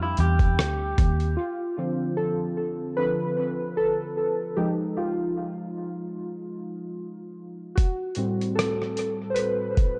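Warbly, detuned synth keys with chorus and tape echo carry this reflective, nostalgic lo-fi hip hop excerpt in D dorian at 75 BPM with a light swing, taking a solo from 1.4 seconds over chords moving from Dm7 through Fm7 to Am9. At the outset a slightly broken-up electric guitar through a small old amp plays a brief tape-echoed melody alongside a round, foam-muted bass, with a gritty, overdriven sampler-style kit entering just after; its thumpy kick, hi-hat and rim click return at 7.8 seconds. The echo-heavy mix sits in moderate spring reverb, lending the whole a dusty, hazy glow.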